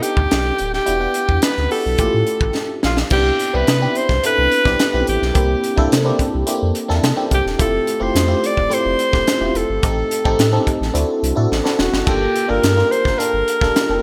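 A breathy alto saxophone leads this polished 1980s jazz-funk pop excerpt, its whispered, intimate subtone and light vibrato sitting up front as it carries the melody throughout the 14 seconds. Beneath it, a glassy FM electric piano with a bell-like attack supplies the accompaniment, colored by phaser and analog chorus as it moves through rich harmony from B7alt and Em9 toward Cmaj7, Fmaj9 and a closing Gm9. A crisp fusion drum kit with a high-tuned snare and tight kick keeps a straight 4/4 at 107 BPM, its gated reverb and pumping small-room sound giving it punch, with fills at 2.6 and 11.5 seconds. A round, sine-like sub bass enters at 0.2 seconds, deep and mellow under the band. The whole recording has a bright, digital 1980s sheen and a lush hall reverb, lending it a nocturnal, urban mood.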